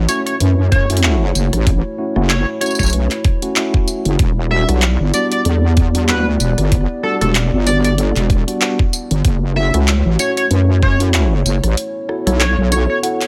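A swung 95 BPM glitch hop groove in 4/4 sets a gritty, playful tone in E dorian, with a dubstep drum kit of handclaps, bright hats, rim click and tambourine ticking over a knocking, tape-warm electronic kick that sits up front from 0.7 s until it drops away at 11.0 s. Underneath, a heavy wobble bass churns low and up front, its detuned square and sine layers saturated through a tube, compressed and thickened with chorus. A dark analog pad holds deep, moody sustained chords with a slow attack and long release, pumping against the beat under sidechain. A mellow, clean tine electric piano scatters delayed stabs that also pump, while an edgy, tearing sync lead carries the melody with vibrato, lush chorus and delay. The harmony moves from F#m7 to Em7, returns to F#m7 and comes to rest on B9sus4, all within a short cut from a longer piece bathed in digital ambience.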